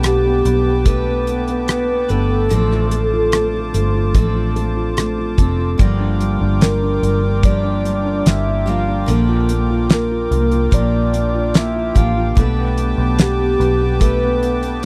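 A dry, close 1970s-style studio sound frames this melancholic, emotional pop ballad excerpt at 73 BPM, where a soft, octave-layered synth lead with chorus, phaser and slapback echo carries the melody over a damped drum kit with a fat snare and tight kick, a round, foam-muted electric bass, a felt-muted upright piano with audible action noise, bright picked steel-string guitar arpeggios in the background, and sweet, reedy accordion chords.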